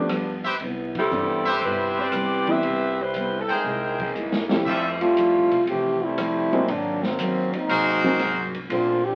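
Brassy and swinging, this big band jazz piece in C major moves at 119 BPM with a strong swing feel. A tight saxophone section with light vibrato carries the melody until 4.5 seconds over woody upright piano, picked steel-string acoustic guitar with audible finger squeak, a pizzicato upright bass in the background and a vintage drum kit with dark cymbals and a punchy kick, while a brilliant, soft-attacked trumpet section adds stabs and the band hits accents. After a drum fill, a clear trombone section takes a solo from 4.7 seconds, all steeped in wet studio reverb and the crackle of a very old 78 rpm record.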